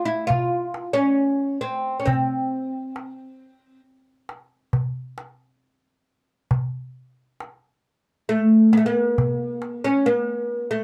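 This Arabic maqam ensemble passage in 10/8 is stately and passionate, taken from a longer piece. A woody, fretless oud with double strings, plucked with a plectrum, carries the melody up front from the opening, while a clay-shelled darbuka with a natural skin joins at 0.3 s and drops out at 9.8 s. The small room adds a moderate ambience, and the production has a dark, warm character.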